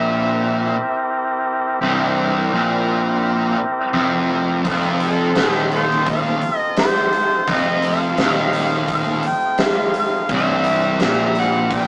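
Blues rock in the power-trio and southern rock vein, this driving, swaggering excerpt moves at 85 BPM in a straight 4/4, with an amplified, gritty harmonica carrying the solo melody over a low, bright, double-tracked fuzz guitar riff, growly fingered bass, and thick, percussive tonewheel organ chords with key click and vibrato, all moving from C7 to F7 at 4.6 s and back to C7 at 10.3 s. The harmonica adds light vibrato, tongue slaps and scooped notes, while a huge arena drum kit enters at 4.6 s with a fat snare, punchy kick and hi-hat up front. The whole thing carries the rough, tube-saturated character of a rehearsal-room recording heard through a small speaker, with a short, wet booth ambience.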